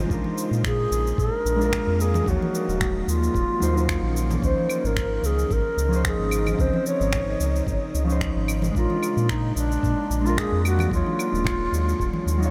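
A dreamy, reverb-soaked mix opens this smooth, blissful sunset chillout excerpt, set in Db major at 111 BPM with a lightly swung sixteenth-note feel in 4/4. A shimmering, ethereal pad holds sustained, detuned chords in the background, its slow attack and long release cushioned by chorus, while a clean, dark electric guitar adds fingered accompaniment through a delay. Underneath, a round, deep analog bass with tube saturation anchors the harmony as it moves from Bb7 to Ebm9 and settles on Dbmaj9 at 4.4 seconds before circling back. A gritty, thumpy electronic kick drum with a sampler-style, tape-tinged character arrives at 0.1 seconds alongside layered electronic cabasa, finger snaps and claves, and saturated acoustic congas sit further back in the mix. Up front, an airy wooden baroque flute enters at 0.7 seconds, its soft attack, vibrato and slightly unsteady tone carried on analog delay across the huge, lingering reverb.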